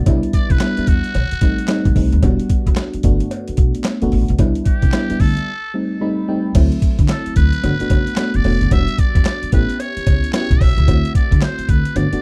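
A gritty, pitched-down sampler drum kit with a thumpy kick and high-tuned snare sits up front in this punchy, slick new jack swing R&B cut at 111 BPM with a swung 16th feel, joined by a woody, dark pizzicato upright bass, a soft, round FM electric piano with chorus playing jazzy chords such as Cmaj9 and B7b9b13, a background cowbell, and a buzzy, raspy metal-muted trumpet melody with tape echo, all captured in a dry, close 1970s-style studio sound with faint mains hum, while a break at 5.5 seconds leaves room for an electric piano fill before the next section begins at 6.6 seconds.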